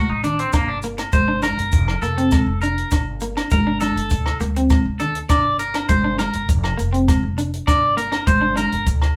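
Highlife guitar band music with a bittersweet mood, heard in a short passage cut from a longer piece, played live in one room with moderate studio reverb. Two twangy, picked electric guitars sit at the edge of break-up, one up front playing accompaniment and the other spinning arpeggios, while a clean electric guitar solo runs throughout. Beneath them a woody, growly pizzicato upright bass, a dry compact cocktail kit with a tight kick, hi-hat and rim click, high-tuned congas played with soft hands, ringing vintage agogo bells and grainy maracas in the background carry the groove.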